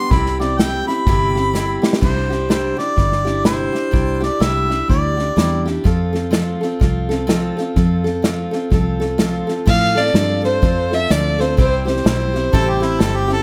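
A clear, up-front harmonica solos at the start of this sunny, down-home honky-tonk and classic country excerpt at 126 BPM with a swung feel in C major, over bright, full-bodied picked dreadnought acoustic guitar, a round, foam-muted fingered electric bass and an acoustic kit played with bundle sticks, with dark cymbals and a punchy kick in a studio room, before a woody bowed fiddle takes the melody at 9.7 seconds and the harmonica returns briefly at 12.5 seconds, all under light reverb.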